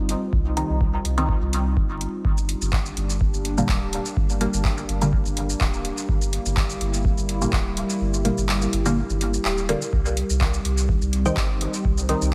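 A deep analog kick drum drives this hazy, hypnotic dub techno at 125 BPM in C minor, dropping out from 8.0 to 9.9 seconds, while a booming drum machine adds handclaps, shaker and metallic hi-hats through dub echo, a round, soft sub bass and a dark, detuned analog pad with chorus and phaser pump beneath muted sawtooth chord stabs carrying phaser and dub echo over Cm and Gm, a bright, resonant, wave-folded stab riff flickers in the background at 11.3 seconds, and vinyl crackle sits in light reverb.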